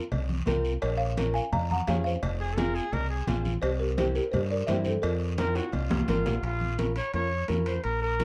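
Driving, danceable cumbia in a straight four, this short cut from a longer piece opens on a woody folk marimba carrying the melody with medium mallets, its rustic tone set off by slapback echo and plate reverb until it drops out at 6.2 seconds. Beneath it a deep dub fingered electric bass sits round and up front, while low-tuned congas with a thick-skinned thud, ringing metal-shell cowbell and timbales, and a raspy, saturated guiro drive the groove. A boxy, fingerpicked nylon-string guitar adds dark accompaniment, and a warm trumpet enters at 2.4 seconds as a second line, punchy yet distant, with light vibrato and scooped notes. A drum fill leads into a closing passage where the trumpet takes a pop-style solo over the rhythm section. The harmony moves through suspended and minor chords before settling back on the tonic minor, and the whole is framed in a small room with a dark, warm production.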